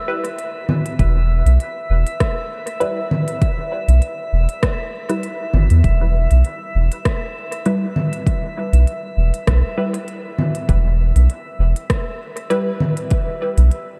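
A lightly swung 4/4 groove drives this hazy ambient dub excerpt, with an overdriven electronic kick and a round, soft sub bass sitting up front, crisp hi-hats, congas and rim clicks from a tape-toned drum kit echoing through a large room, muted, detuned sawtooth chord stabs colored by phaser, lush chorus and dub echo, and a calm, glassy sine texture of drifting overtones floating above on chorus and reverb throughout its 14 seconds.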